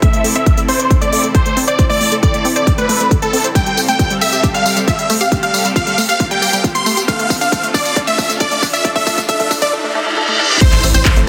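A huge, detuned supersaw lead carries the soaring melody up front in this euphoric uplifting trance passage at 136 BPM in A minor, its bright sawtooth tone shaped by phaser, a low-pass filter, digital delay and sidechain pumping. Beneath it, a very quiet, lush unison pluck adds a second line, while a tight, evolving sequenced synth spins driving arpeggios through chorus and delay as a filter sweep moves across it through the build-up. A punchy, layered electronic kick sits forward, joined by a house kit of crisp hats, handclaps, tambourine and crash, with a drum fill starting at 3.6 seconds. Faint risers and a reverse cymbal climb toward an impact at 10.6 seconds, and a nasal, sawtooth sequencer bass bursts in on A1 at 10.7 seconds as the harmony moves from Am through Fadd9 and Dm back to Am. Light digital reverb and a dense, heavily limited modern master give this excerpt of a longer piece a polished, euphoric lift.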